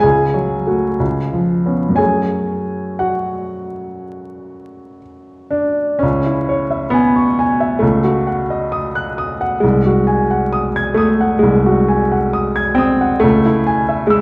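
In a rubato 4/4 at 58 to 69 BPM, this mournful, yearning fragment of a romantic classical nocturne sets a warm, natural solo baby grand piano up front, ranging from B#1 to G#6, moving from F# minor into C# minor at 6.0 s, with a wet recital-hall reverb, a distant room perspective and a vinyl crackle.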